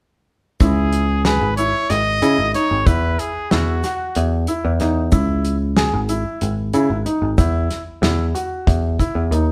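Captured as a band playing live in one room with moderate studio reverb, this tense, driving progressive instrumental excerpt in C# minor moves in a straight 7/8 at 186 BPM (eighths), alternating between C#m and Esus2. A bright, punchy trumpet with light vibrato carries a classical-style solo melody up front from 0.6 to 4.2 seconds. Beneath it, a clear, polished baby grand piano plays short-sustained arpeggios, a growly picked electric bass and a damped 70s drum kit with a fat snare and tight kick sit forward, and a grainy egg shaker plays very quietly, close and dry, until 9.3 seconds.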